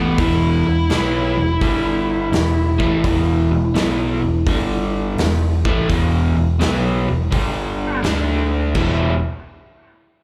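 A swung 4/4 shuffle at 84 BPM sets a smoky, brooding blues rock and southern rock groove in E minor, captured like a live gig through a club PA with small-room ambience, in this cut from a longer piece. A crunchy, double-tracked guitar sits up front, its bright picked riff cycling between E5 and G5 power chords with slapback echo, while a growly, amped, overdriven fingered bass holds the low end and a big acoustic kit enters at 0.2 seconds with a punchy kick, medium-tuned snare, hi-hat and crashing cymbals. Over this, a dark, smooth picked lead guitar with overdrive, slapback and tape echo sings a melody until 8.0 seconds, as the chords move to D5 and resolve on Em at 8.8 seconds.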